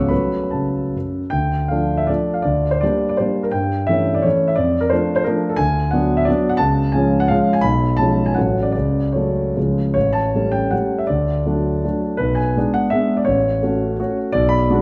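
Wistful and capricious, this romantic classical excerpt is a triple-time dance in 3/4 for solo concert grand piano, its dotted rhythms pushed and pulled by rubato at a tempo ranging from 135 to 190 BPM. Set in D minor, it turns toward F# minor from 5.6 seconds, and the piano spans C#1 to C#6 with a deep bass and an up-front, warm presence. A generous recital hall reverb and a dark production surround the playing across its 14.8 seconds.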